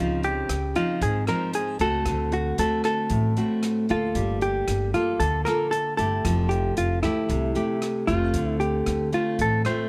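A lightly reverberant sound opens this short cut from a longer bossa nova piece, romantic and relaxed at 115 BPM in a straight 4/4. Up front, a dark, clean hollow-body jazz guitar carries the melody, fingered and compressed, moving between E4 and C5. Beside it, a warm, full-bodied nylon-string guitar fingerpicks the accompaniment across a broad range, its deep classical tone marked by audible finger squeak. Underneath, a woody pizzicato upright bass with steel strings holds the low end, while a small-room jazz drum kit, smooth with a boomy kick and rolled-off top, adds quiet hi-hat and rim clicks from 0.2 seconds. The harmony moves through Dbmaj9, D7, Gm9 and Fmaj9 before settling on Dm7 at 8.3 seconds.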